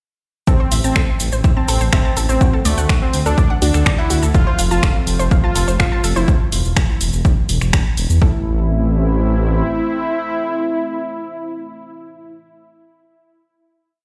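A menacing, saturated detuned saw bass sits up front in this cinematic, dramatic melodic techno piece in straight 4/4, its sequenced sixteenth-note line shaped by an evolving filter swell and sidechain pumping. A punchy, tape-warm electronic kick drives a four-on-the-floor pulse beneath an analog drum machine programmed with finger snaps, shaker and open hi-hat over a backbeat. A thick, bold and bright unison lead carries a repeating riff with vibrato and digital delay, while a lush, wave-folded pluck spins a sixteen-step arpeggio high above through tape echo, both breathing with sidechain pumping. From 4.3 seconds a full-bodied, sweeping resonant pad adds slow-attack sustained chords with chorus and a sub octave, as the harmony moves through Am, D, F and E5. The drums stop by 8.3 seconds, and the lead and pad hold a final Am chord, set in light digital ambience and the stone reverb of a bare room heard over a big sound system.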